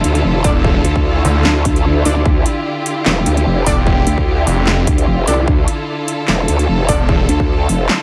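Two up-front growling basses dominate this heavy, chaotic wobble dubstep excerpt at 149 BPM in D minor, one a wobbling, saturated sine growl with chorus and overdrive, the other a snarling, detuned sawtooth bass with distortion and a moving notch, both sitting low between E1 and D2 over a half-time, swung feel. Beneath them a punchy, overdriven electronic kick and a big-room dance kit of handclaps, metallic hi-hats and snare drive the groove, while a bowed string section holds sustained chords with vibrato and sidechain pumping from the start. From 0.4 s a bold, bright orchestra-hit-like synth stab with a noise layer, filter sweep, reverb and delay punctuates the background until 7.0 s, all in a dry mix.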